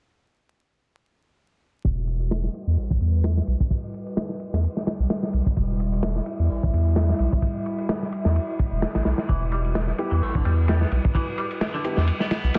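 Energetic and raw, this breakbeat excerpt in E minor at 129 BPM with a light 16th-note swing opens at 1.8 seconds with a crunchy, saturated drum kit, a very quiet shaker and a deep sine sub bass under a filter sweep. A warbling, detuned tape-like pad joins at 2.5 seconds with nostalgic sustained chords, chorus and sidechain pumping. A bright semi-hollow electric guitar riff with digital delay enters at 9.3 seconds, and a grand piano with 12-bit sampler grit adds intimate stabs at 10.0 seconds, all in a dense, heavily limited mix with vinyl crackle and a low-pass filter.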